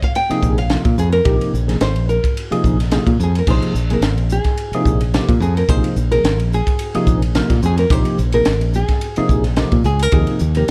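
A funky, driving groove at a lightly swung sixteenth-note feel sets this short electric jazz fusion fragment in motion, carried by a crisp acoustic drum kit with a high-tuned snare, punchy kick, hi-hat, ride and crash cymbals, all sitting up front in a small, pumping room. A bright, fingered electric bass joins at 0.3 seconds, direct and forward in the mix, anchoring the low end alongside the drums. The tine electric piano enters at the same moment with clean accompaniment colored by a phaser, its tone heard through built-in speakers and placed up front. Over this, a fingerpicked nylon-string guitar carries the melody from the very start, its warm, small sound sitting lower in the mix than the rhythm section. The harmony rests on a suspended Bb9sus4 chord before shifting to Ebsus4 near the end, and the passage is clearly cut from a longer piece.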